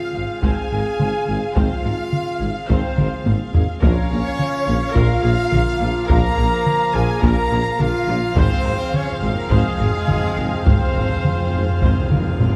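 Close, dry taiko drums struck with heavy sticks drive this epic, dramatic orchestral film cue at 106 BPM, with a fill at 3.0 seconds, as a lush symphonic violin section carries the expressive, vibrato-rich melody over Fm/Ab and Bbm harmony. Behind it, an airy flute ensemble and a very quiet chamber violin section share a second line, an intense viola section accompanies, and dark, distant French horns, tight trombones and a majestic full pipe organ hold sustained chords while a trumpet section adds bright stabs. Tuba, cellos and double basses anchor the low end, round soft-mallet timpani enter with a fill at 8.4 seconds, and a scoring-stage reverb gives this cut from a longer piece a dark, warm production.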